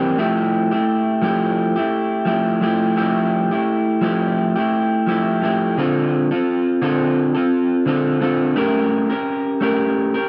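A lone electric guitar, picked and slightly broken-up through a small old amp, sits up front with a subtle chorus and a warbly pitch drift, playing on its own through this sunny, nostalgic indie pop fragment cut from a longer piece. Over a gently swung feel, it moves from Fmaj9 to Dm7 at 5.8 seconds and lands on A7b9 at 8.6 seconds. The sound is dry and close, with a modest booth ambience that recalls a 1970s studio.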